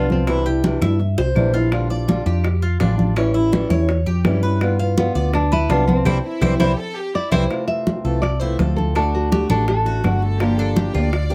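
This excerpt of Cuban son in the guajira vein moves at a brisk 166 BPM in 4/4 with a sunny, relaxed feel in F major. Up front, a dark, full-bodied nylon-string guitar carries the melody with audible finger squeak, sounding briefly at the start and returning from 5.0 seconds, while a fingerpicked archtop guitar supplies accompaniment. A Cuban tres adds metallic arpeggios from its doubled strings, and a round, amped hollow-body electric bass sits prominently underneath. The percussion sets low-tuned, thick-skinned congas against tight, high-tuned bongos and woody, vintage-toned claves in the background, with a drum fill near the opening and a band accent around 6.1 seconds. An intimate studio violin section, bowed sul tasto with light vibrato and a soft attack, enters at 6.2 seconds as a second line and returns near the close. Beneath it the harmony wanders through Cadd9, Bb6, A7, G7 and C, then moves on through Fmaj7, D and Gm7, all captured with close, detailed microphones in a small room.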